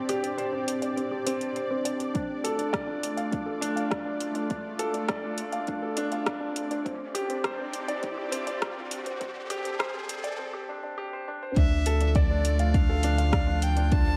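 A straight 4/4 pulse at 102 BPM drives this cinematic, hypnotic piano and strings electronica in D minor, where a deep house kit of metallic hi-hat and rim click sits under an up-front grand piano riff trailing delay and a lush, detuned unison pad with chorus and sidechain pumping over Gsus4 and Dm chords; a deep, tape-warm electronic kick joins at 2.2 s, a background riser and filter sweep build toward a brief break, and at 11.6 s the drop brings an airy, intimate sul tasto violin melody over a round analog bass on D2, also sidechained, inside a moderate echo-chamber reverb.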